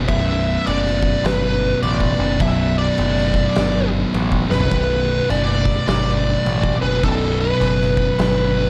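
Stoner and doom metal in B minor, this short, sludgy and hypnotic cut from a longer piece moves at 104 BPM in 4/4 with a swing on the eighth notes. Two thick fuzz guitars sit in the background playing a distorted, picked riff low in the register, one with a warm tone and the other darker, while a growling picked electric bass sits up front, bright and overdriven, anchoring the low end beneath them. From 0.1 seconds a fuzz lead guitar carries the melody up front, its compressed tone colored by wah, distortion and analog delay. The oversized low-tuned drum kit stays in the background with a fat snare, punchy kick, toms and dark cymbals, its gritty, saturated sound captured in a bright stone room, and it plays a fill at 4.4 seconds before dropping out at 8.4 seconds. The mix carries little reverb, keeping the whole dense wall of fuzz close and heavy over a single Bm chord.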